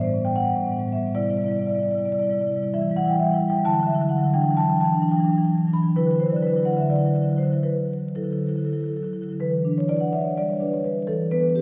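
Set in a wet church reverb of 3.1 seconds and heard from further back in the room through vinyl crackle, this hypnotic, reflective excerpt of contemporary classical music for solo marimba unfolds in a rubato 7/8 at 231-267 BPM counted in eighths, its woody, round, mellow rosewood tones struck with soft mallets across A2 to B5 as the harmony drifts in E minor from Asus2 and Cadd9 through Em9 and Dadd9 before a brief second section settles onto Em7 at 9.4 seconds.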